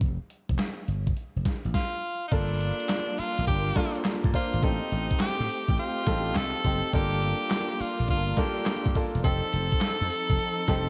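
This new jack swing cut from a longer R&B piece carries a confident, punchy mood, riding a swung sixteenth-note groove. A thumpy, sampler-style drum machine with vintage 12-bit grit and tape-tinged color sits up front from 0.0 seconds, its kick, medium-tuned snare, handclaps, hi-hat, tambourine and crash sounding as if re-recorded in a large room, while a bright, amped slap bass punches underneath. At 1.7 seconds an edgy tenor saxophone takes the solo lead, forceful and pop-styled, with light vibrato and scooped notes placed prominently in the mix. From 2.3 seconds a clear, polished baby grand piano adds present accompaniment touched by slapback echo, and a bowed studio string section holds soft-attack sul tasto chords with vibrato and a smooth top, intimate yet tucked into the background. The harmony moves through Gm7, Am7b5 and back to Gm7 before landing on F7, all wrapped in light digital ambience.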